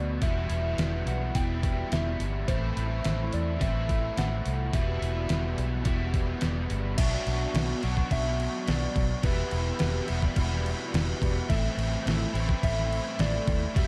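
An overdriven, double-tracked electric guitar riff opens this hazy, melancholic shoegaze and dream pop excerpt in E minor at 106 BPM, with an amped, foam-muted fingered bass and a gentle FM synth lead whose round, keys-like, decaying melody sits in the background under chorus and slapback echo. At 0.2 seconds a detuned 8-bit drum machine arrives up front, its thumpy kick, medium-tuned snare, hi-hat and crash pushed through overdrive with a small-room character. The chords move from Em and Am into a second section at 7.0 seconds that turns to Bm before coming back to Em and Am, the mix set in a dark digital ambience.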